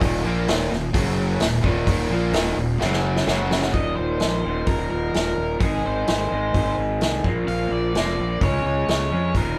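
A straight 4/4 pulse at 128 BPM carries this sunny, driving classic rock excerpt. A roomy vintage drum kit with tight kick, medium-tuned snare and hi-hat sits up front beside a growly, fuzz-laden fingered bass and a bright, overdriven raw garage guitar riff, while a tight distorted guitar adds a second picked riff until 3.7 s. After a drum fill from 2.8 s, a dark octave-fuzz lead guitar takes up the melody as the band plays live together in one room with moderate studio ambience.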